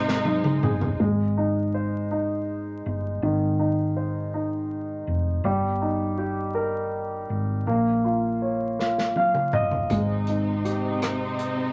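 A vinyl crackle sits under a roomy club reverb in this tender, romantic pop ballad in a straight six-eight, cut from a longer piece. A polished grand piano carries the accompaniment up front from start to finish, while a dark, round hollow-body electric bass holds the low end beneath it. A lush, bowed string section with vibrato voices sustained chords at the opening, falls away at 1.0 seconds, and returns at 9.9 seconds as the harmony settles onto a major-seventh chord. An acoustic drum kit played with bundle sticks, with a punchy kick, snare, rim click, hi-hat and toms, opens with a fill and comes back at 8.8 seconds for another fill alongside a piano fill. The harmony moves gently through a few chords, giving the passage an intimate, heartfelt glow.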